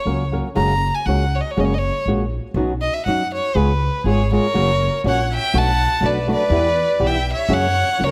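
A rich, focused solo violin with vibrato opens this festive, romantic mariachi excerpt up front, joined almost at once by a dark, thumb-plucked flamenco guitar and a woody, thumpy pizzicato upright bass, while a clear, biting chamber violin section adds an earthy bowed second line from 4.1 s, all captured with close, detailed microphones and light reverb.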